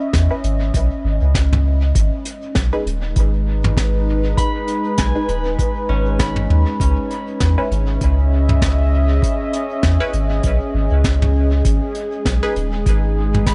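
A round, mellow sub bass sits up front in this hazy, meditative ambient dub fragment, paired with a deep, overdriven analog kick in the background and a dark, smooth brush kit of hi-hat, snare and toms trailing dub echo, all riding a lazy swung groove. A warbling, nostalgic tape-like pad holds detuned chords drenched in chorus and reverb, while a muted, plucky chord stab flickers through phaser, lush chorus and echo. A fingerpicked concert harp rings out arpeggios with gritty 12-bit sampler texture and tape echo until 8.8 s, returning at 13.5 s.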